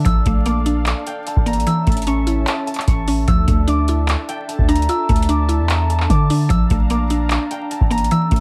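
Vinyl crackle sits over a digital ambience in this brief, eerie and menacing trap excerpt, moving at 149 BPM in 4/4 with a half-time feel in D harmonic minor. A booming analog drum machine enters at 0.1 s with a deep kick, metallic hi-hats and handclaps, its tape-warm sound placed up front beside a long sustained 808-style bass that is deep, sine-like and decaying. Above them, a concert harp carries the melody high in its register, its fingerpicked notes ringing through tape echo. A mallet-like synth pluck supplies woody, percussive accompaniment in the middle range, bright and treated with chorus. Softly in the background, a warm analog pad holds smooth, detuned sawtooth chords that warble gently with subtle chorus and a slow attack. The harmony moves from Bbmaj7 to A, then rests on Dmadd9 before returning to Bbmaj7 near the close.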